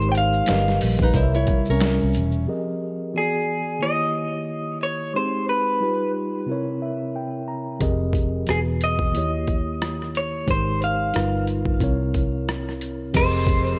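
A slightly broken-up electric guitar, played through a small old amp with tape echo, carries the melody up front in this soulful, introspective neo-soul and R&B excerpt, its lo-fi, compressed tone sitting in a fairly high register. Underneath, a mellow tine electric piano sounds clean and direct across the whole passage, moving through jazzy F minor harmony with altered dominants, Fm11 and Abmaj7 colors, and it takes a short fill at 6.5 seconds. The tempo is an unhurried 90 BPM in 4/4 with a swung sixteenth-note feel. A boom bap sampler-style kit, pitched down, gritty and overdriven with a thumpy kick and high-tuned snare, joins a dark, round, foam-muted fingered bass and close, dry maracas and finger snaps at the start, while a boxy, fingerpicked nylon-string guitar adds a small second line from 1.0 seconds until the groove drops away at 2.5 seconds. Guitar and electric piano then carry on alone until drums and bass return at 7.8 seconds, with the maracas and snaps reappearing briefly at the very end. 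A light reverb gives the mix a gentle sense of space.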